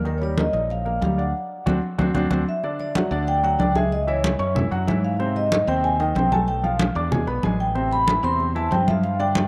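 A moderate spring reverb gives this short cut from a longer Afro-Cuban jazz piece a sunny, sophisticated glow, with a mellow, ringing vibraphone played with soft mallets carrying the melody through a slow motor vibrato and a boxy small-room character. A woody upright piano supplies the accompaniment, while a bright, direct electric bass sits up front and thin-skinned congas, compressed and saturated under soft hands, handle the percussion in a straight 4/4 feel. The band hits an accent between 1.3 and 2.6 seconds, and the harmony wanders through colourful changes from Ebmaj9 and D7 to Abmaj7, Bm7b5 and a closing Am9.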